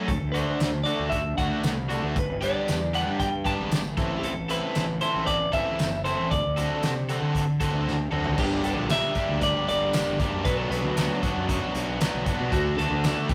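A rough rehearsal-room recording with saturated grit and moderate reverb frames this wistful yet upbeat indie rock excerpt at 116 BPM in D mixolydian. Up front, a double-tracked crunchy guitar picks a bright overdriven riff, a twangy clean electric guitar carries the melody above it, and a round, fuzz-soaked fingered bass sits underneath. A loose acoustic kit with a punchy kick, fat snare, dark cymbals, tambourine and toms fills the pumping room, with a drum fill at 7.9 seconds just before the chords move from D, G, Am and D7 to Gm and Bm.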